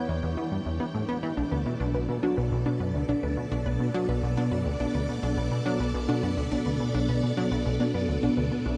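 Bathed in a vast, echoing cathedral reverb, this expansive, hypnotic stretch of ambient, sequencer-driven space music at 105 BPM in 4/4, tuned to A4 = 436 Hz and cut from a longer piece, fades in on a lush, vintage string machine ensemble, its phaser and ensemble chorus coloring bright sustained chords over Em7 and Bm7. From the start, a punchy, funky analog bass riff with ring-modulated, filter-plucked edges, subtle chorus and tape echo sits up front, and a detuned, full-bodied unison pluck with its own tape echo joins with arpeggios at 1.4 s.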